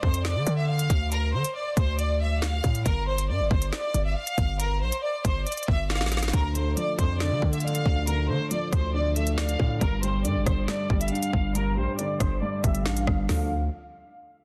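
A hard-hitting 808-style bass dominates this menacing drill excerpt, its punchy, sine-based tone carrying a noise layer, a fast attack and a decaying tail that sits up front from G1 to D3. The drill drum kit shares the foreground at a half-time 138 BPM in 4/4, pairing a hard-clipped kick and crisp hats with a woody snare given soft clipping, plus rim clicks and toms, and a drum fill arrives at 5.9 seconds. Above them, a clear studio violin section carries the ominous melody between Bb4 and F5, its bowed, focused ensemble sound with vibrato set distant and shaped by a low-pass filter and delay. At 6.3 seconds a dark concert grand piano enters as accompaniment, mellow and intimate yet boxy, with deep bass and audible action noise under its own low-pass filter, while a filter sweep runs until 13.3 seconds. The harmony in D minor moves between Dm and G5, tuned to A4 = 444 Hz, and the whole is framed by light digital reverb in a dense, heavily limited modern master carrying lossy compression artefacts.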